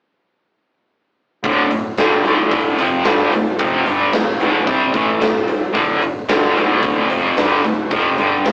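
Hard rock with a swaggering, energetic drive at 111 BPM, this short excerpt kicks in at 1.4 seconds on a D5 chord, with a bright, picked overdriven electric guitar riff carrying harmonic tremolo up front, a dark, sludgy distorted guitar playing a riff in the background, a growly fingered electric bass sitting very quiet beneath, and a huge arena drum kit with a punchy kick and medium-tuned snare, all captured with a rough rehearsal-room quality, tube saturation and an AM radio tone in a moderate studio reverb.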